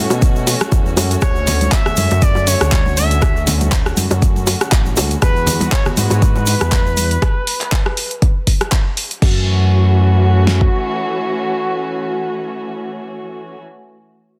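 A swung sixteenth-note groove in four drives this hypnotic afro house excerpt. It rests on a deep, up-front kick and a fat, softly clipped snare, with handclaps, hi-hat, rim click and crash from a layered, tape-colored electronic kit re-recorded in a small room. Round, low-tuned bongos and ringing congas sit close and dry in the background beside a grainy, bright egg shaker in a small room, and the percussion drops away by 7.2 seconds. A smooth, saturated sawtooth bass with sidechain pumping holds the low end up front, while a dark, veiled con sordino chamber string section sustains bowed chords with vibrato and its own pumping. From 1.2 seconds an expressive portamento lead glides in with subtle chorus and digital delay over a progression from F#m7 through Dmaj7 and Eadd9 back to F#m7. The kit and bass fall away at 10.7 seconds, leaving the strings and lead in a dense, heavily limited mix bathed in studio reverb.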